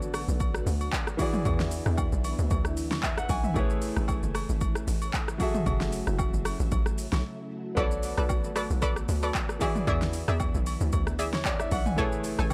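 An overdriven deep house drum kit sits up front in this late-night, soulful amapiano excerpt, its punchy kick, fat snare, metallic hi-hats, handclaps, rim clicks, shaker and toms driving a 114 BPM groove in 4/4 with a light 16th-note swing. Beneath it, a hollow log drum bass with a fast attack and a noisy FM edge bounces through the low end, while acoustic agogo bells and woodblock add close, dry color in the background. A clear grand piano supplies intimate accompaniment, its audible action noise giving it a natural presence, over a vintage, organ-like ensemble string pad whose sustained chords are treated with phaser, ensemble chorus and sidechain pumping. The harmony in B dorian moves through Bm7, E7 and F#m9. After a short break at 7.2 seconds, a bright, warbling analog pluck enters at 7.8 seconds with sawtooth stabs, a filter sweep, chorus and analog delay. The mix is dry and gritty, with a hardware character and little reverb.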